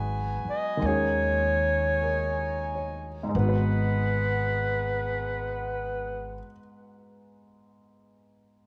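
A warm baby grand piano, a tight saxophone section holding sustained chords with a smooth top, and a woody pizzicato upright bass open this short cut from a wistful, smoky jazz ballad in G# minor. At 0.5 seconds a mellow solo clarinet takes the melody up front, its jazz phrasing coloured by vibrato and scooped notes. The tempo sits around 44-54 BPM with a swung 4/4 feel and slows over the opening seconds as the harmony moves from G#m7 to D#7sus4 and back. The bass sits prominently beneath, its acoustic steel-string tone clear and present. The saxophones, bass and clarinet stop at 6.4 seconds, and the piano plays alone until 8.7 seconds. A light reverb gives the group the intimate feel of a small room.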